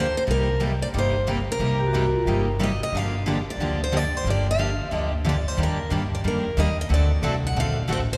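A woody, thumpy upright bass, played pizzicato on gut strings, stands out up front in this short, bittersweet excerpt of jazz manouche, a virtuosic acoustic string swing at a brisk 181 BPM in G minor. Above it, a bright, boxy parlour-style steel-string guitar carries the picked melody, while a full-bodied jumbo guitar picks accompaniment close by. A third steel-string guitar, fresh-stringed and set further back, adds more accompaniment. From 1.8 to 2.5 seconds a ringing, metallic vibraphone with medium mallets and the motor off slips in briefly as a second line in the background. The harmony moves through Cm7, Gm7, Ebmaj7 and D7#9, and a long cathedral reverb gives the whole passage the spacious sound of a church or concert hall.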